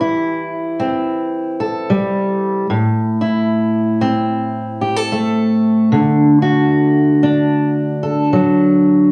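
Worn, warbling cassette tape with warbly pitch drift and a small-room reverb frames this short, pastoral and hopeful folk fragment at 75 BPM with a lightly swung feel, where a dark, up-front fingerpicked steel-string acoustic guitar plays solo from C/E to Am at 2.7 seconds and on to D at 5.9 seconds before the cut.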